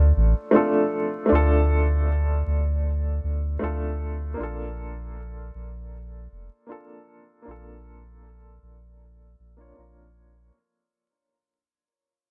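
This short trip hop fragment opens with a dark upright piano and a soft dub sub bass sounding together from the first moment, setting a hypnotic, smoky mood at 78 BPM in 4/4 with a light 16th-note swing. The piano carries the accompaniment in a mellow, woody voice, treated with tremolo and a low-pass filter that keeps its tone hushed and close. Beneath it, the sub bass sits deep and round, its sustained notes sounding up front alongside the piano. The harmony moves from Dm to Bbmaj7 at 4.4 seconds, and the whole passage fades out over its roughly 10.5 seconds. A small room ambience and a layer of vinyl crackle give the sound a worn, intimate texture.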